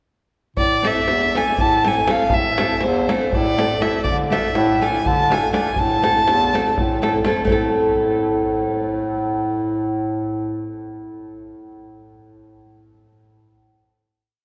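A dark, sul tasto violin opens this short, restless and bittersweet Balkan wedding-band piece at 0.6 s, together with the bass clarinet and davul. It plays a close, intimate, motif-based melody with a soft attack, light vibrato and a smooth top, over a warm, vintage bass clarinet holding root and fifth on the main beats and a deep, compressed, saturated davul. The fingerpicked nylon-string guitar adds bright off-beat chords in a brisk straight 7/8 at 244 BPM in A harmonic minor, moving from Am to Dm and back; the violin stops at 7.0 s and the clarinet and guitar sustain a final chord from 7.5 s into a long cathedral reverb.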